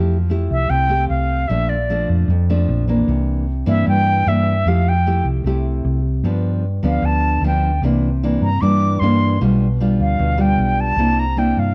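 Nylon-string guitar and hollow-body electric bass open this sunny, romantic bossa nova together at 0.0 seconds, with the concert flute joining at 0.5 seconds. The tempo is a brisk 152 BPM in a straight 4/4, set in F major, and the passage is cut from a longer piece, running about 11.7 seconds. The fingerpicked classical guitar sounds dark and full-bodied as it carries the accompaniment through Fmaj9, Bbmaj7, C9 and G7 changes, while the short-scale bass gives a round, amped foundation in its low register. Above them, the flute sings the melody with an airy tone, vibrato, a soft attack and rolled-off highs. All three parts sit up front in a close, dry mix with a dark, warm production.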